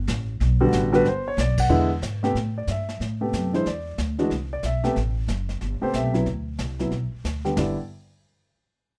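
Playful and warm, this jazz piano trio swings at 184 BPM in G major, with a woody pizzicato upright bass starting at 0.0 seconds and a vintage brush kit joining a moment later, its dark cymbals, tight kick and rolled-off top sitting low in the mix. An intimate grand piano carries the melody from 0.6 seconds, placed up front with audible action noise, and the band hits an accent together at 1.5 seconds. The chords move from Gmaj7 and E7 through Am9 and D7 before landing on G5, in a dry, close sound cut from a longer piece.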